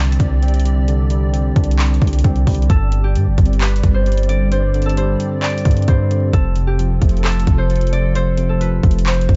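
A punchy, heavy 808-style bass with a fast attack and decaying tail sits up front alongside an electronic trap kit of hard-clipped kicks, metallic hi-hats and handclaps, driving this brooding, eerie half-time hip hop and trap passage at 132 BPM. The passage is cut from a longer piece and opens with a break running to 2.7 seconds. Above them, a mellow, fingerpicked Celtic harp rings out the melody through a low-pass filter and digital delay, while a clean tine electric piano, also filtered, plays accompaniment and a hollow, flute-like pad with a slow attack and ensemble chorus sustains chords moving from Csus2 to Gsus4 and F. The sound is dry and dusted with vinyl crackle, its top end dulled above 7.7 kHz.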